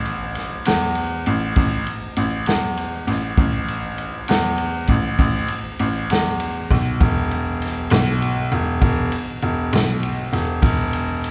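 Swaggering and soulful, this slow blues moves at 66 BPM in dotted quarters over a straight 12/8 feel, cut from a longer piece. A bright baby grand piano carries the bass line low in its register, sitting up front with a brilliant, natural tone, while a vintage acoustic drum kit enters at 0.1 seconds with a punchy kick, a medium-tuned snare and dark ride cymbal. A moderate church reverb gives the whole track the resonant sense of a large hall.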